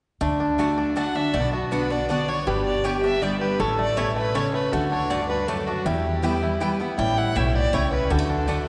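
A dark, woody fiddle sits up front with light vibrato, carrying the melody from 1.0 seconds in this joyful, virtuosic bluegrass excerpt in D major, played at 160 BPM in a straight 3/4. Beneath it, a twangy, percussive banjo played with fingerpicks shares the melody, while a lap resonator guitar adds a metallic, nasal slide line as a second voice. A bright, full-bodied jumbo acoustic guitar picks the accompaniment, and a thumpy pizzicato upright bass anchors the low end. A round, double-strung mandolin adds picked stabs from the background. The chords move from D through Bm, G, A, Em and A7 back to D, and the whole band rings out in the long, wet reverb of a church.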